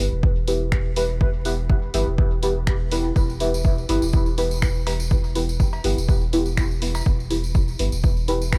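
Hypnotic and hazy, this dub techno excerpt rides a single E minor chord, with a deep, mellow chord stab treated with chorus, phaser, dub echo and sidechain pumping sitting up front over a clean, smooth sine sub bass that also pumps. A punchy analog kick enters at 0.2 seconds, followed at 0.5 seconds by a layered, tape-warm deep house kit of finger snaps and hi-hat, both re-recorded in a small room. At 3.2 seconds, very quiet overdriven bongos and cowbell join alongside a jingly, distant tambourine, all beneath a haze of vinyl crackle.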